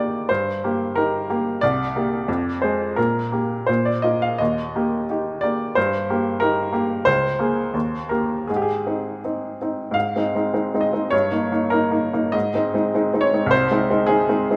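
A bright, woody upright piano sits up front in this lyrical, passionate romantic character piece, its short sustain framed by a moderate recital-hall reverb. Moving in a rubato 2/4 between 78 and 107 BPM, the solo line ranges from C2 to F5, opening in E-flat major before turning to A-flat major at 7.1 seconds. A new section begins at 9.9 seconds, and the fragment ends at 14.6 seconds, clearly cut from a longer work.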